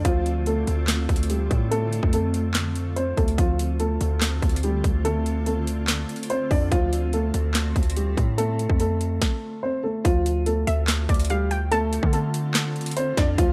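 Brooding and hard-hitting, this half-time trap excerpt at 144 BPM in D minor sets a dark, boxy grand piano melody with tape echo over a cloudy granular pad, a distorted, aggressive 808-style bass and an overdriven trap kit of hard-clipped kick, sharp snare, claps and metallic hats, all held on a Dm7 chord in a dry, up-front mix, before a stop from 9.2 to 10.0 seconds and a warbly, lo-fi pluck with chorus and tape echo entering at 10.7 seconds.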